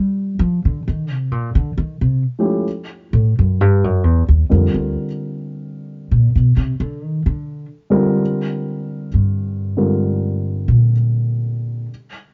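A slow swung 4/4 at 65 BPM sets the pace for this melancholic, smoky jazz ballad in C minor, cut from a longer piece. An up-front upright bass takes the solo throughout, its pizzicato steel strings sounding woody and thumpy, while a dark, mellow baby grand piano accompanies with intimate, short-sustained chords and audible action noise, moving from G7 through Cm11 to a closing C9sus4 at 8.2 seconds. The production is dry and dark, with little reverb and a soft top end.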